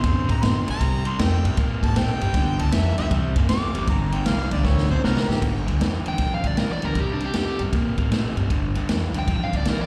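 Rollicking and laid-back, this electric blues shuffle swings at 156 BPM. A jazzy harmonica solo with vibrato, scooped notes and slapback echo opens over a bright, crunchy picked guitar riff, a woody, thumpy pizzicato upright bass and an up-front vintage drum kit with a punchy kick and rolled-off top, which plays a fill from 4.7 s. After the harmonica bows out at 5.4 s, a dark, smooth overdriven lead guitar takes the melody at 6.1 s, all heard as a live gig through the venue's PA with recital-hall reverb in this excerpt cut from a longer piece.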